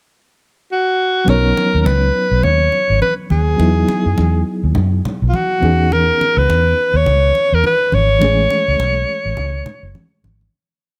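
A warm, vibrato-tinged alto saxophone leads this short, lush 1970s-style soul piece in B major at 104 BPM with a swung sixteenth feel, entering at 0.7 seconds with smooth, up-front, motif-based call phrases over a pickup bar before the verse settles on chords moving from Badd9 through Emaj9 and C#m9 to Amaj7. Beneath it, a dark, round, foam-muted electric bass plays a melodic soul line with chromatic approach notes, while a reedy, worn and slightly out-of-tune electric piano holds drop-2 chords through its built-in speakers with a fast tremolo. Low-tuned, damped congas sit in the background with a slap on two and open tones on four, all in a small room, before the piece fades out from 8.2 seconds.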